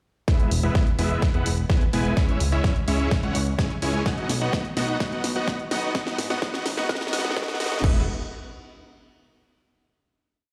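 This is a festival progressive house piece in E major at 127 BPM in a straight 4/4, anthemic and triumphant from its first bar. The supersaw and drums arrive at 0.3 seconds, with the bass joining at 0.5, launching one long build-up that runs to 7.8 seconds, moving through E, C#m, B and G#m before landing on a final E chord that rings until the close. A huge, detuned supersaw carries the riff in dotted-rhythm chords with open voicing, sitting up front with sidechain pumping, delay and a low-pass filter sweep across the build. Beneath it, a fat analog bass plays off-beat lines with its own sidechain pumping. A punchy, overdriven electronic kick drives a four-on-the-floor pulse, while a big-room dance kit adds a drum fill through the build with closed and open hi-hats, a high woodblock, a massive snare and crash cymbal. The mix sounds as if played on a big sound system in a bare room, washed in a lush hall reverb and thinned by a high-pass filter.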